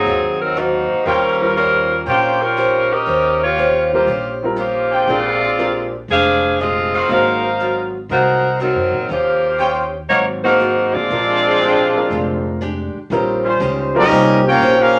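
A swung 4/4 groove drives this brassy, swinging big band excerpt, cut from a longer piece, with a pizzicato upright bass on woody gut strings and a picked archtop guitar with a boxy, old-string tone underpinning a vintage grand piano's smooth comping. A mellow, tight saxophone section carries the melody up front with soft attacks and vibrato, while a distant, roomy trumpet section punctuates with stabs and a close-miked trombone section adds a second line from 10.9 seconds, briefly joined by sustained trombone chords. At 14.0 seconds a clear trumpet section takes over the melody, all set in a wet studio reverb with a rolled-off top end.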